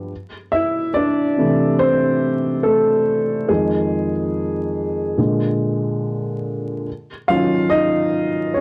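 Hip hop with a nostalgic, hazy mood, built from a lone upright piano heard as a solo across the whole 8.6-second excerpt, which is cut from a longer piece. The piano sits up front with a dark, woody, mellow tone and long sustain, softened further by a low-pass filter and spanning F2 to F5. It moves through a short progression of C6, Fm7, Bb7 and Ebm9 over a swung sixteenth-note feel in 4/4. The recording carries the character of worn, warbling old cassette tape, with vinyl crackle and warbly pitch drift coloring the sound. A moderate studio reverb gives the piano a small sense of space.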